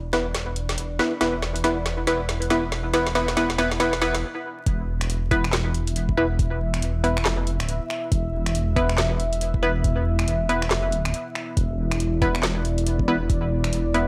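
A moody sawtooth pad with chorus and ring modulation opens this meditative, heavy deep dubstep passage at 139 BPM in half-time with a swung sixteenth feel. It sits over a rumbling, tube-saturated detuned saw bass and a muted dub chord stab whose filter sweeps through a build-up, while a garage drum fill of snaps, claps, metallic hats and woody snare runs beneath, joined by a knocking electronic kick at 0.3 seconds. After a brief stop at 4.2 seconds, the drop lands at 4.7 seconds, where the small-room drums and kick drive on and the chorused stab's dub echoes ring out up front. The gritty, dry hardware sound carries vinyl crackle and light digital ambience.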